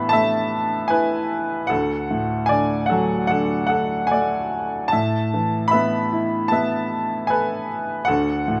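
The recording puts a clear baby grand piano up front, captured by close, detailed microphones and a light reverb. This is a short, lyrical classical solo piano passage, cut from a longer piece, with a tender, warm mood. It moves at 75 BPM in 4/4 with a rubato feel, and the piano's natural tone and long sustain carry across a range from D2 to B5. The harmony alternates between Asus2 and D, shifting to D at 1.7 seconds, returning to Asus2 at 4.9 seconds and settling on D again at 8.1 seconds.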